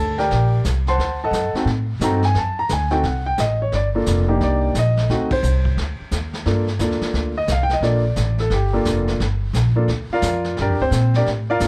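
Swinging jazz piano trio in a moody, smoky vein, cut from a longer piece, with an intimate, up-front grand piano carrying the melody, its action noise audible, over a woody pizzicato upright bass on steel strings. A vintage kit played with brushes enters at 0.2 seconds, sitting mid-forward in a small room with dark cymbals, a punchy kick and a rolled-off top, while light reverb surrounds the trio. The band hits an accent at 5.3 seconds, and from 6.5 seconds the piano takes a solo.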